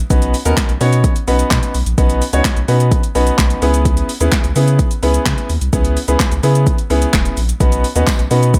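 A digital ambience frames this short, carefree and euphoric dance-pop drop in B major at 128 BPM, cut from a longer piece, where a deep, saturated triangle sub bass with a fast attack and an up-front grand piano, clear with audible action noise, both pump against the sidechain. An overdriven, layered deep house drum kit with a deep kick, punchy snare, handclaps, hi-hat and shaker sits up front with the tone of a small room, while the chords move from Badd9 to C#m7 at 3.6 seconds and back. A very quiet, jingly tambourine sounds briefly from a distant large room at 8.1 seconds.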